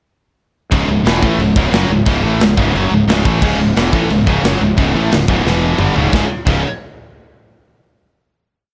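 A dark, epic burst of heavy metal, this complete piece charges ahead at 177 BPM in 4/4 with a straight feel in C# minor. From 0.7 seconds, three picked electric guitars drive a power-chord riff: two high-gain guitars with distortion, one of them set in the background, and a crunchy, double-tracked overdriven guitar also tucked behind. A fuzz-soaked, growly fingered electric bass with overdrive doubles the guitar riff in driving eighth notes. A tight acoustic metal kit sits up front in a big room, its saturated, gritty sound carrying bright china and crash cymbals, a medium-tuned snare, a tight kick and toms in a metal drive groove, with a drum fill from 5.5 to 6.1 seconds. The riff moves from C#m to E5 and C#5 before landing on a final chord at 6.1 seconds that rings out to the close.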